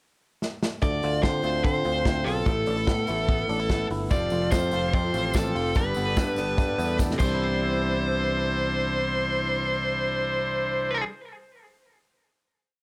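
Jangly indie pop with a nostalgic, breezy mood, where a dark, up-front vintage drum kit opens with a fill into a dance-floor beat with off-beat open hats, and a distorted high-gain lead guitar plays song-like motifs over a twangy, fingerpicked clean electric guitar with vibrato, a shimmering picked twelve-string acoustic and a growly, melodic electric bass with slides, before a buzzy overdriven combo organ holding close chords and a jingly tambourine on the backbeat join at 4.1 s ahead of a final hit at 7.4 s, set in light reverb.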